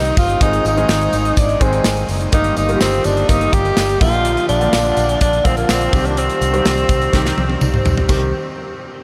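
A breathy tenor saxophone leads this 1980s-style pop excerpt, its mellow, whispered tone sitting up front with vibrato, a soft attack and a smooth top, carried on delay and shimmer reverb. The mood is urgent yet nostalgic, with a straight 4/4 feel and a chord sequence moving from Ab through Eb/G and Bb to Cm. Beneath the sax, a baby grand piano adds present, polished accompaniment treated with analog chorus and its own shimmer reverb. A vintage muted fingered electric bass gives a dark, round, foam-muted low end with an amped punch. A modern studio drum kit, airy with a medium-tuned snare and a punchy kick, drives the groove with crash, hi-hat, toms and tambourine, while a separate, very quiet tambourine adds a jingly, bright shimmer. A drum fill runs from 7.1 to 8.1 seconds, and the whole dreamy mix is soaked in a huge ambient reverb.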